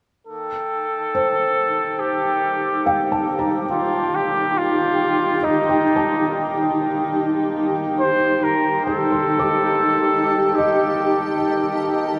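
A huge, wet reverb with a long decay bathes this ambient excerpt, giving it a peaceful, weightless mood at 70 BPM in a straight 4/4, set in E-flat Lydian and resting on a single Ebmaj7 chord. A clear flugelhorn carries the solo melody up front from 0.3 seconds, played in a classical style with light vibrato and trailed by a diffuse ambient delay. Beneath it, a hand-pumped harmonium holds a very quiet, reedy drone, while a glass harmonica sustains a single high note as an ethereal, airy texture in the background. A felt-muted upright piano enters at 1.1 seconds with soft, dark, intimate arpeggios, also softened by diffuse delay. From 1.7 seconds a cloudy granular pad enters up front with evolving, blurred sustained chords and its own reverb.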